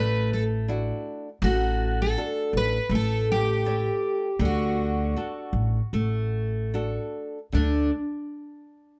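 The rhythm moves in a loose, rubato 4/4 at around 80 BPM, giving this fado-style ballad in D major a longing, passionate sway. Up front, a fingerpicked twelve-string acoustic guitar carries the melody with a shimmering, octave-doubled, full-bodied tone from fresh strings, set in a plate reverb. Beneath it, a bright, fingerpicked flamenco guitar supplies accompaniment across a broader range, while an upright bass, played pizzicato and also up front, adds a woody, thumpy low end. The harmony moves through Dadd9, D/A, Aadd9 and D before settling on a bare D5 as a new section begins at 7.5 s. All three instruments play together from the start and stop at 7.9 s, heard in a small room with moderate reverb.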